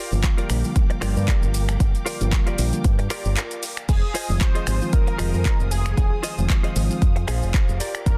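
A dense, heavily limited modern mix in digital ambience carries this sensual, groovy nu-disco excerpt, where a punchy electronic kick and a house kit with metallic hats, finger snaps, handclaps, shaker, crash and a soft-clipped snare drive under an up-front fingered bass with an envelope filter, while a clean, picked electric guitar riff with analog chorus and tape echo, a reedy electric piano with sidechain pumping and tape echo, and dark, lush strings pumping in the background fill the texture until a brief break at 3.4 seconds gives way at 3.9 seconds to a thick, detuned sawtooth unison lead with chorus and digital delay, and the guitar closes with a fill at 7.0 seconds.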